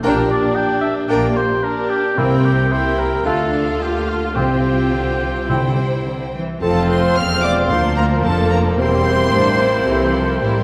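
Cheerful and spirited, this quick classical-period movement for symphony orchestra moves at 111 BPM in 4/4 with a rubato feel, and it is cut from a longer piece. A rich, bowed chamber violin section carries the melody high above the orchestra, while a second violin section, a distant oboe with light vibrato, a roomy clarinet and an airy, mellow concert flute in the background weave second lines beneath it. A close, focused studio viola section and a very quiet bassoon fill in the accompaniment, a mellow French horn section holds sustained chords until about 10.1 seconds, and a smooth cello section joins a focused double bass section to anchor the bass. Timpani struck with hard mallets sound articulate from the background between 2.2 and 6.3 seconds, and a very quiet, roomy trumpet section adds stabs from 6.6 seconds as the harmony settles onto F. The orchestra is heard from further back in a wet scoring stage, its long reverb lending the ensemble a spacious glow.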